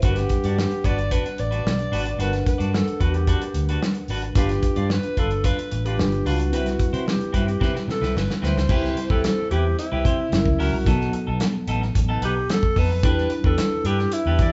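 Glossy and urban, this polished 1980s jazz-funk pop passage, cut from a longer piece, moves in a straight four. A clear, close-miked alto saxophone carries the jazz-style solo melody with soft attacks and vibrato, while a mellow tine electric piano supplies clean, direct accompaniment beneath it. A picked electric guitar riff adds a warm, clean line, and a round, foam-muted fingered bass sits dark and amped at the bottom next to an up-front acoustic drum kit with a tight kick, medium-tuned snare, hi-hat and crash that sounds smooth with a rolled-off top. The band plays live in one room under a large studio reverb, and the high end of the recording is gently trimmed. The harmony glides from Gmaj7 through G7 to Cmaj7, then a drum fill at 7.6 s leads into a new section at 8.7 s that moves through F#7 and B7 to settle on Em7.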